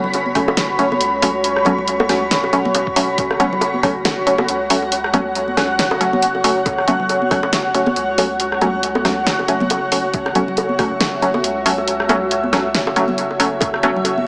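A cloudy, blurred granular pad sits up front on a sustained F# minor chord over a round, soft sub bass and acoustic congas and bongos with dub echo, opening this dark, cavernous deep dubstep excerpt at 138 BPM in a swung half-time feel, where an electronic house kit with a fat snare, rim clicks and hi-hats joins at 0.1 seconds, muted, detuned chord stabs with chorus and dub echo pluck through from 0.4 seconds, and a gritty, overdriven kick thumps in fitful bursts, all soaked in a huge ambient reverb with a small-speaker sound.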